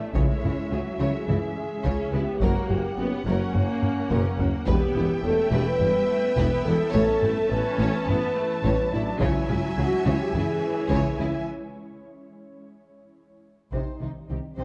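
Close, dry taiko drums struck with hard sticks drive a straight 4/4 pulse through this brooding, tense cut from a hybrid orchestral and electronic film score, with a drum fill at 3.8 s and a break at 11.5 s. A dark, woody violin section carries the melody over a focused second violin line, an expressive viola section and mellow, distant French horns holding sustained chords. A soft, round pluck adds very quiet arpeggios and an ethereal, airy pad hovers in the mix, while lush cellos, a rich double bass section and a roomy tuba, which stops at 11.3 s, anchor the low end in a recital hall space with a warm production.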